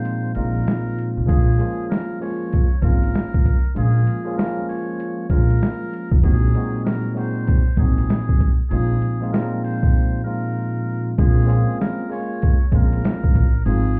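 Muffled as if heard through a wall, with a faint club ambience, this cut from a longer boom-bap hip-hop track sets a tough, moody tone in Bb minor at 97 BPM, with a 63% swing on the 16ths. A bell-like tine electric piano, bright and clean with a cassette-tape tint, opens on Fm7/Bb alongside the trumpet before the sampler-style drum kit arrives at 0.1 seconds, gritty and compressed, pitched down, with a thumpy kick, a medium-tuned snare and hi-hat sitting up front. A pizzicato upright bass with a woody, acoustic tone enters at 0.4 seconds, moving through Bbm7, Ab7/Bb and back to Fm7/Bb. Floating quietly above, a jazz-style trumpet with a metal mute carries the melody, brilliant yet buzzy and thin, with light vibrato, a smooth top and a trailing delay. At 11.2 seconds the piece shifts into a new section on a Bbm9 chord.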